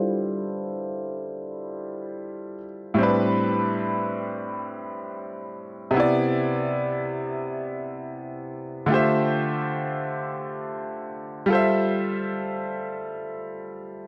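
R&B in a tender, romantic mood, this solo passage cut from a longer piece features a brilliant, worn grand piano sitting up front in a small, lightly reverberant room behind a low-pass filter, with a filter sweep over the first 3.0 seconds on G13sus4 before the rich extended harmonies move through Am11, Cmaj9 and Dm11 and back to G13sus4.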